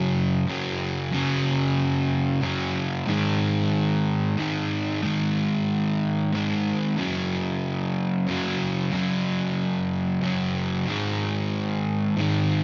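Rock, euphoric and cinematic in mood, carried by a single sludgy distorted electric guitar playing alone for the full 12.6 seconds of this short excerpt cut from a longer piece. The guitar is dark and overdriven, picked and double-tracked, and sits up front in the mix, with a digital delay trailing its notes. It moves between F#5 and G#5 power chords, shifting to G#5 at 3.1 seconds and back to F#5 at 7.0 seconds, all in a rolling 6/8 metre. The playing stays in a low register, giving the heavy tone a thick, grounded weight. A moderate concert hall reverb with a long 2.2 second decay opens up the sound and lends the passage its broad, cinematic sweep.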